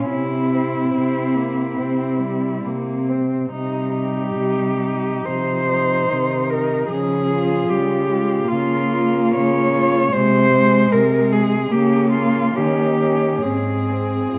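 The pulse moves freely at around 72 BPM in 4/4, with uneven beats and a rubato feel that lets each phrase breathe. This is a lyrical classical piece for an ensemble of four muted cellos, elegiac and solemn in mood, and it is cut from a longer work. It settles into Ab major from 3.5 s. The melody cello sits up front with a veiled, smooth-topped tone and vibrato. Beneath it, a second line sounds distant, with a soft attack and portamento, while an accompanying cello adds a dark, con sordino voice. The bass cello, entering at 0.1 s and also placed up front, carries light vibrato, and a moderate large-studio reverb gives the ensemble a spacious glow before the harmony comes to rest on Ab at 13.4 s.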